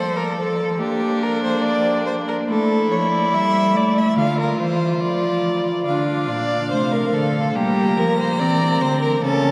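Drenched in dark cathedral reverb, this solemn, serious fragment of a baroque-style string quartet fugue moves at a measured 71 BPM in 4/4, with an expressive, up-front violin melody carried by vibrato and portamento, a focused second violin line with a smooth top beneath it, and a rich, close cello bass, before a smooth, even viola accompaniment enters at 5.9 s as the music settles into D minor.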